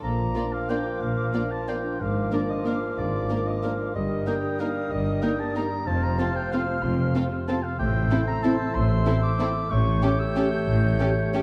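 A dark, warm orchestral sound fills this short classical excerpt, set in a moderate scoring-stage reverb that gives the ensemble a sweeping, elegant air. In Bb major and 3/4 at 186 BPM, the beats are uneven and the pulse stretches with rubato as the harmony moves from Bb through Eb/G and F to a closing A7. From 0.4 seconds a violin section carries the soft, pure, floating melody in the background, while a second violin section, a rich viola section and a mellow French horn section add soft-attack support beneath it, the horns in sustained chords. An airy flute ensemble plays with vibrato high above, joined by a distant, roomy oboe, a vintage-toned clarinet and a bassoon with light vibrato. A ringing, fingerpicked concert harp spreads arpeggios across the texture. Underneath, a woody, lush double bass section and a cello section hold the bass line until 10.9 seconds.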